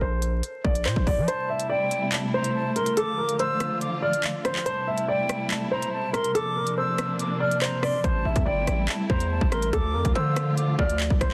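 Set in a light small-room ambience with vinyl crackle and a dense, heavily limited modern master, this cold, ominous excerpt of half-time drill hip hop at 142 BPM in A phrygian opens with a mellow, deep-toned grand piano melody over a saturated, aggressive 808-style bass and an up-front electronic drum kit of crisp hi-hats, rim clicks, handclaps and a hard-clipped kick; at 1.3 seconds the bass and kick drop away as a lush, bowed symphonic string section and a pure, hollow concert flute with tape echo enter, and the heavy bass and kick return at 8.0 seconds over the Am7 and Dm chords.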